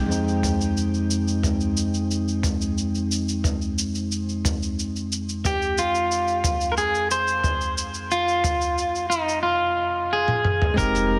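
A bell-like, barky tine electric piano and a round, deep analog bass note with tube saturation open this wistful, smooth sunset chillout excerpt in F minor at 90 BPM, the piano playing a filter-swept Fm7 with delay and shimmer reverb. They are joined by a dusty, gritty, tape-toned soul drum kit of hi-hat, shaker and toms. A twangy electric guitar at the edge of break-up enters at 5.5 seconds with a fingered melody through spring reverb, delay and shimmer. A drum fill arrives at 10.3 seconds, and a thumpy electronic kick sits in the background alongside the bass's return at 10.8 seconds, all set in a lush hall reverb with a heavily compressed radio sound.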